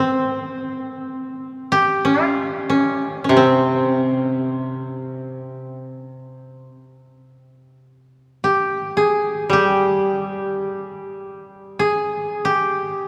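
A long cathedral reverb, trailing for nearly five seconds, surrounds this brief passage of Japanese traditional chamber music, cut from a longer piece. Two kotos, both plucked with fingerpicks, sit up front against that spacious hall. The first carries the melody from the opening moment, its mellow, woody tone kept dry and close as it moves through the middle register. At 3.3 seconds a second koto enters underneath with a warm, lower accompaniment, a touch softer than the lead. The phrase is stated twice in succession, and the mood stays calm and austere until the passage is cut off at 13.1 seconds.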